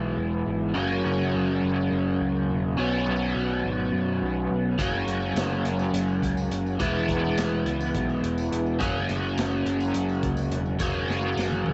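A bright, double-tracked overdriven guitar riff played through a rotary speaker opens this trippy, hazy psychedelic rock excerpt in 7/8 at 209 BPM, over a growly, round fuzz bass and a very quiet, reedy combo organ with heavy vibrato holding sustained chords that move through Eadd9, F#add9 and Bsus2, before a gritty, dark breakbeat drum kit with a tight kick and a jingly tambourine in the background join at 4.8 s, the drums ending on a fill at 11.1 s in a lightly reverberant studio sound.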